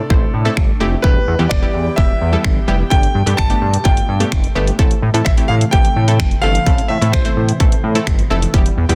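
Dense and heavily limited, with light reverb, this short dance-pop excerpt from a longer piece moves at 128 BPM in a straight 4/4 in A minor, tuned to A4 = 441 Hz, with a confident, energetic mood. A punchy, layered electronic drum kit sits up front with kick drum, warm hi-hats and finger snaps, plus soft clipping on the snare. Alongside it, a glossy, retro synth bass built from pulse and sawtooth waves, with pulse-width modulation, a filter sweep and chorus, pumps against the sidechain. A bright, detuned unison pluck with a noise layer and decaying notes adds lush accompaniment from 0.1 seconds, while an airy, breathy pad with a slow attack and long release holds chords in the background through chorus and phaser, also pumping. Over the Am, Em, Gadd9 and Am progression, a clear, smooth concert grand piano with a vintage character carries the melody through a delay until 8.3 seconds.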